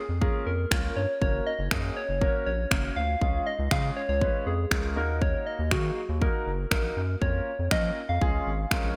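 A gentle, keys-like FM synth lead opens this carefree, euphoric dance-pop passage at 120 BPM in F# major, carrying the melody through a moderate hall reverb and bright 1980s-style digital sheen. It is joined by a deep, wave-folded analog bass with sidechain pumping, then a clear grand piano with lush chorus and long sustain alongside a punchy, up-front electronic kick and finger snaps with gated reverb that drive the groove.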